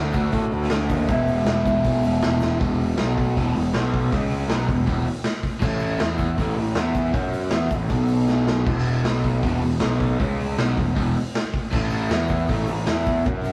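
Garage rock with a raw, rowdy mood at 158 BPM in E mixolydian, this excerpt opens on an overdriven, double-tracked electric guitar riff with a phaser, pushed up front beside a growly fuzz bass and a gritty, saturated drum kit with a punchy kick and a pumping stone-room sound. After a drum fill at 2.4 seconds, the guitar moves through power chords on E, B, C#, A and F#, with another fill arriving from 8.3 seconds, while a very quiet, grainy egg shaker comes and goes, present at 5.6 seconds. A rough rehearsal-room feel and cassette tape character, with a stone room reverb, give the whole recording a crude, live immediacy.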